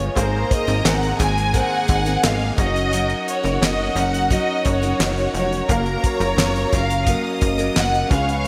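This short excerpt carries a bright 1980s-style digital sheen, set in a lush hall reverb that gives the whole mix a hopeful, glowing air. It is piano-driven pop in F# major at 87 BPM in a straight 4/4, moving through G#add9, D#m7/F# and F#maj7. A studio violin section carries the melody with smooth, even vibrato, joined at 0.2 seconds by a second, richer and closer violin section playing a second line. Beneath them, a concert grand piano with deep bass and a chorus effect sits in the background, while a picked dreadnought steel-string guitar plays a full-bodied riff. Up front, a punchy, funky analog bass with a fast attack, a filter pluck and a ring-modulated edge drives the low end, alongside a dry, mid-forward 70s drum kit of tight kick, fat snare, hi-hat and handclaps, treated with gated reverb.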